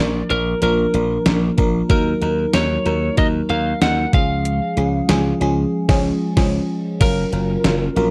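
A dry, close recording with a light touch of reverb and a 1970s studio character frames this short cut from a longer 1980s-style pop piece, nostalgic yet urgent in mood. A glassy FM electric piano with a bell-like attack carries the accompaniment, its chorus and phaser adding shimmer over a noise layer, while a bright, punchy slap bass sits up front beneath it. From 0.3 seconds a gated 80s digital drum machine joins with a thumpy kick, an overdriven gated-reverb snare, hi-hat and crash cymbal, sounding sampler-like and re-recorded in a small room. Above them a lightly driven lead guitar, picked and compressed with a slightly broken-up edge, sings the melody in a fairly high register. The chords move from Bb through Ebm and Db, the band hits an accent between 5.7 and 7.0 seconds, and the passage opens onto a Gbmaj7 at 7.0 seconds as a new section begins.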